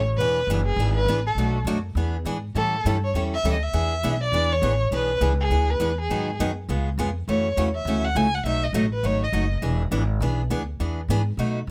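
A bowed solo violin carries the melody up front, its expressive line shaded with vibrato and portamento as it moves between G#4 and G#5 before falling silent at 9.6 seconds. This is lively, playful jazz manouche in E mixolydian, swinging at 204 BPM in 4/4. Beneath it, a pizzicato upright bass with gut strings gives a woody, dark, thumpy low end, sounding through to 11.7 seconds. A bright picked steel-string acoustic guitar enters at 0.2 seconds with accompaniment, its finger squeaks audible, moving through changes such as E7, Bm7, A7, G#m7, C#7, F#m7 and B7 before settling back on E7. Close, detailed microphones and little reverb put each instrument near the listener in this lively cut from a longer piece.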